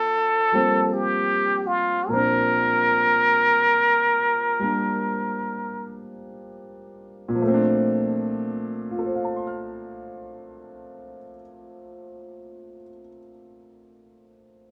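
Swung eighths in a slow 4/4 that slows down over the first 7.4 seconds carry this late-night, romantic jazz ballad fragment, cut from a longer piece, where a breathy plunger-muted trumpet sings a short wah-wah melody with light vibrato and scooped notes until 6.0 seconds, up front over a clear concert grand piano whose deep-bass accompaniment continues alone to 14.7 seconds, the band playing live together in a small room with moderate reverb.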